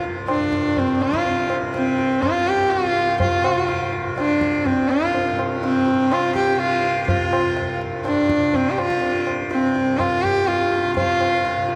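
A straight 4/4 pulse at 124 BPM from high-tuned, ringing tabla anchors this radiant, devotional Hindustani classical excerpt, where a bright, buzzing tanpura drone shimmers low beneath an up-front, earthy sarangi gliding with portamento between 0.3 and 11.6 seconds, its sympathetic strings resonating in a cathedral-like reverb.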